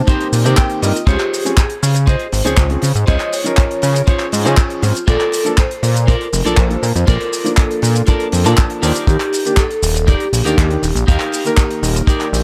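Sleek and cosmic, this nu-disco excerpt at 120 BPM rides a dry, tight kick drum and a damped 70s kit of handclaps, hi-hat and shaker under a fat, detuned analog bass with a filter sweep, while a metallic, ringing vibraphone carries the melody over a clear baby grand piano with sidechain pumping and a twangy, slightly broken-up electric guitar riff. Vibraphone, piano and guitar all trail analog delay in an echo-heavy mix as chords move from Cm7 to Ebmaj7, with a clean electric guitar fill flashing by at 0.3 seconds.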